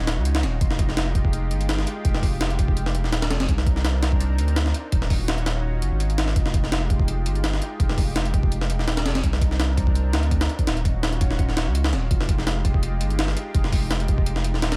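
A dry, raw mix opens this dark drum and bass cut with jungle roots, taken from a longer piece and built on a cycle of minor ninth chords. Up front sit a compressed, pitched-up, overdriven sampler-style drum kit with a thumpy kick, high-tuned snare and hi-hat in a small room, entering at 0.1 seconds, and a deep, thick sine sub bass with tube saturation and a fast attack, both running to the end at 14.8 seconds. Behind them, a lush, detuned unison pad of sawtooth and square waves holds sustained chords with a slow attack and long release, its chorus warbling and its vintage 12-bit sampler grit giving it a full-bodied haze.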